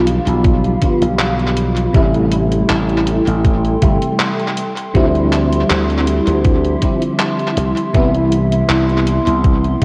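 Faded and woozy, this vaporwave fragment drifts at an unhurried pace with a gentle swing, cut from a longer piece. An FM electric piano layered with a soft pad carries the accompaniment, its lush, dreamy tone colored by ensemble chorus and tape echo. Above it, a warbly, tape-like pad holds sustained chords with a nostalgic, lo-fi haze, thickened by chorus, its own reverb and a phaser. A growly, punchy slap bass runs through an envelope filter and sits up front. A thumpy electronic kick arrives at 0.4 s, just after a detuned 8-bit drum machine's handclaps and hi-hat appear at 0.1 s, both treated with studio reverb. The chords move from G7/B through Am7 and Dm11 to Cmaj7, all inside an echo-heavy mix with a cassette-tape character and light digital ambience.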